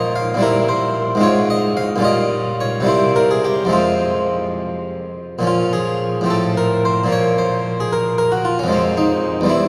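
A long, wet cathedral reverb surrounds a solo harpsichord, heard up front with a round, plucked Flemish-style tone on one set of strings, in this short passage cut from a longer baroque-style suite movement. In a flowing yet grave 6/8 at around 69-77 dotted-quarter beats per minute, played with rubato, the music sits in F minor before turning toward Bb minor at 5.4 s, moving through chords such as C7, Gm7b5/Bb and F/A across a range from E2 to F5.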